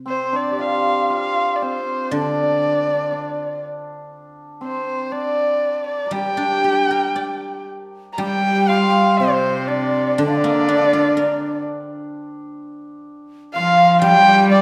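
A silvery, fingerpicked guzheng opens this wistful, tender Chinese chamber piece in G yu mode, joined almost at once by a dark, intimate erhu carrying the melody up front with portamento and light vibrato, and by a shimmering hammered dulcimer on a second line, in a rubato 2/4 around 57-64 BPM. At 8.2 s a breathy, very quiet bamboo xiao and a biting, nasal cello add two more lines beneath and beside the erhu. The ensemble sits in the lush reverb of a recital hall, in an excerpt cut from a longer piece.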